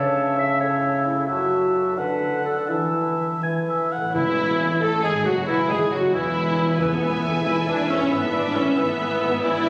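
Swaying in a rubato 6/8, this classical fragment, cut from a longer piece, carries an urgent, dramatic mood. Woodwinds and harp open it: an oboe with light vibrato, a mellow clarinet in the background and a pure, hollow flute at a very low level weave second lines. Beneath them a dark bassoon accompanies, while a ringing, thumb-plucked concert harp spins arpeggios in the background. At 4.1 seconds the orchestra joins: a distant violin section adds another line, a clear cello section and a smooth double bass section share the bass, and soft timpani struck with medium mallets sound until 7.4 seconds. A moment later, at 4.2 seconds, a lush second violin section takes the melody, an up-front viola section gives focused accompaniment, and a faint French horn section holds sustained chords. The harmony passes through an Esus4 resolving to E before the closing chords, and the recording, made on a phone in the room, sits in a reverberant concert hall with added compression.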